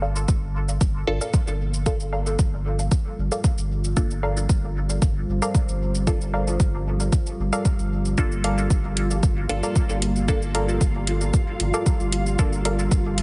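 A heavily compressed, radio-like dub techno excerpt in G minor at 114 BPM, where an overdriven, up-front kick and metallic hats anchor a round sine sub bass while two muted filtered chord stabs, one with dub echo and chorus, the other phased and bright, pulse with sidechain pumping over a dark, detuned ambient pad holding a single Gm7, before a grainy, flickering texture drifts in at 8.9 seconds to deepen the meditative, hypnotic mood.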